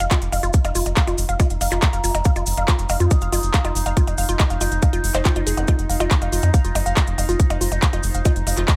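Psychedelic trance with a hypnotic, alien mood, cut from a longer piece and driven by a tight, up-front electronic kick that runs from 0.1 seconds onward. A round, deep analog bass sits prominently underneath, while an overdriven techno drum kit adds handclaps, smooth hi-hats and percussion blips, joined in the background by a grainy, vintage-sounding cabasa. The riff comes from a woody, wave-folded pluck with a noise layer, a filter sweep and a moving notch, colored by chorus and tape echo and pumping against the kick. Behind it, a resonant drone holds sustained chords with moving overtones, slow attack and long release, treated with chorus, phaser, reverb and the same sidechain pumping. A very quiet, cloudy granular pad drifts in at 1.4 seconds, blurred and detuned, and a brief electronic zap flickers at 5.6 seconds, all set in a digital ambience.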